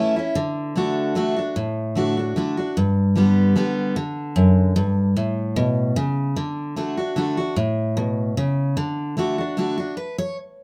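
A picked steel-string acoustic guitar opens the recording alone and carries it from start to finish, a short bluegrass excerpt cut from a longer piece. The mood is virtuosic and driving, set at 150 BPM in a straight 3/4 metre in D major. The guitar has a warm, full-bodied jumbo tone and sits up front in the mix, its picked lines spanning from F#2 up to C#5. The harmony moves from D to G, then through A and back to D, trading between A and D before the chords drop away at 10.0 seconds. A moderate small-room reverb gives the instrument a close space, and the playing rings on until about 10.4 seconds.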